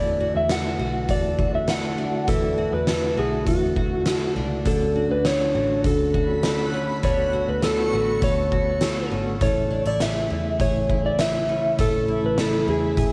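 A straight 4/4 pulse carries this floating, ethereal dream pop passage, cut from a longer piece. An oversized, low-tuned acoustic drum kit enters at 0.5 seconds, its boomy kick, fat snare and hi-hat sitting up front in a pumping stone room. A dark, foam-muted electric bass plays round, punchy low tones beneath a picked twelve-string acoustic guitar, whose shimmering, octave-doubled arpeggios carry audible finger squeak. A mellow, flute-like tonewheel organ holds sustained chords through chorus vibrato and a slow rotary speaker, while a brilliant, slightly broken-up electric slide guitar carries the compressed lead melody with tape echo. At 6.1 seconds a reversed, granular texture swells in high in the background with its own reverb and echo, and the harmony moves from E9sus4 to Dmaj7 to Amaj7 in this home cassette recording set in a wet small room.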